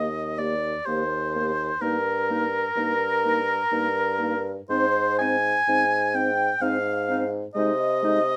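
Melancholic and solemn, this slow romantic movement for wind quintet unfolds at 64 BPM in 3/4 time with a rubato feel, in Eb major, and is cut from a longer piece. The silver concert flute carries the melody, pure and expressive with vibrato and a crisp attack, yet it sits distant and very quiet. The oboe's second line shares the flute's register and stands up front, close-miked and warm with light vibrato. Beneath them, a roomy clarinet and a present French horn hold the accompaniment in the background, while a mellow bassoon anchors the bass up front with its own light vibrato. The harmony moves from Eb through Eb/G to Ab and Ab/C, and light reverb surrounds the ensemble across the 8.4-second passage.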